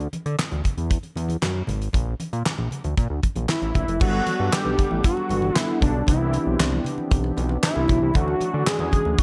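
Fat analog bass, a damped seventies drum kit with handclaps, gated reverb and a fat snare, and very quiet congas open this smooth, danceable early-eighties boogie funk excerpt, before a warbling, vintage analog lead with phaser enters at 3.5 seconds and round, brassy synth brass with chorus joins at 4.0 seconds as the chords move to Gmaj9.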